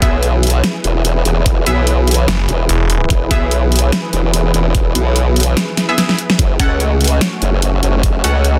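A swung, half-time 146 BPM groove in 4/4 drives this chaotic, aggressive stretch of heavy wobble dubstep: a knocking electronic kick and a dubstep kit with a huge snare and bright hats sit up front, and a drum fill arrives at 5.8 seconds. A saturated, formant-filtered wobble bass with chorus and overdrive dominates the low end, joined at 2.3 seconds by a snarling, growling distorted saw bass, while punchy, full-bodied orchestra-hit-like stabs ring out with reverb and delay. Beneath them, a lush supersaw pad holds sustained chords that pump against the sidechain under a low-pass filter, moving from E to F#m at 6.4 seconds, all packed into a dense, heavily limited modern master with light digital ambience.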